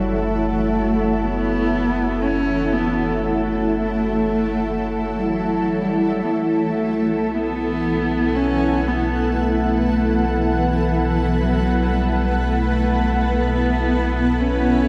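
A bright, blurred granular cloud pad sits up front, holding detuned, slowly evolving chords bathed in shimmer reverb, while a dark, woody cello carries a close, bowed melody with vibrato, played sul tasto and trailed by tape echo. Beneath them a round sine sub bass anchors the harmony as it moves from F#m7 to B5 at 6.3 s, and the passage unfolds in a vast, echoing cathedral space. This reflective, melancholic ambient fragment in 3/4 is cut from a longer piece.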